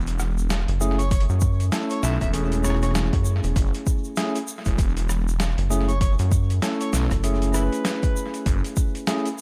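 Playful and swaggering, this short glitch hop fragment swings its sixteenths over a single lingering F#m9 chord in an echo-heavy mix with light reverb and digital ambience. Two up-front basses anchor the low end: a thick, swirling detuned saw bass run through a phaser from the start, and a rubbery, hollow square bass with a dark, resonant filter pluck arriving at 0.7 s. A gritty, pitched-down boom bap sampler kit of hi-hat, rim click and medium-tuned snare, overdriven and fed through analog delay, sits with a grainy, bright tube shaker. A punchy, layered electronic kick, overdriven and re-recorded in a small room, lands up front at 1.1 s. A clean tine electric piano through a combo amp plays stabs roughened by vintage 12-bit sampler grit and sidechain pumping, while an amplified, overdriven harmonica takes a jazz-style solo with light vibrato, tongue slaps and scooped notes, trailing analog delay.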